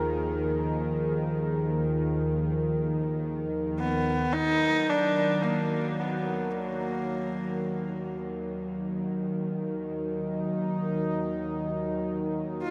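In free time, this ominous, dark ambient drone cut from a longer piece opens on an evolving, bright sawtooth pad with chorus and a filter swell over a tense, detuned, string-like drone, before a husky, earthy horsehead fiddle with airy bow and portamento enters up front at 3.8 seconds, the drone fading in from 4.3 seconds within a huge, wet reverberant space.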